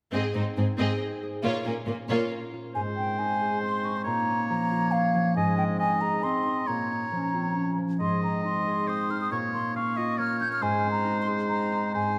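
An up-front, ringing concert harp plays arpeggios through this heroic, triumphant cinematic excerpt in 3/4. It begins beneath lush bowed strings: a distant studio violin section carries the melody, a smooth-topped chamber violin section adds a second line, a bright, intense viola section accompanies, and a focused cello section holds the bass, all falling away by 2.3 seconds. From 2.7 seconds a mellow, hollow silver flute and a present oboe take up second lines over the harp, joined at 2.8 seconds by a soft-attack clarinet, within a moderate scoring-stage reverb.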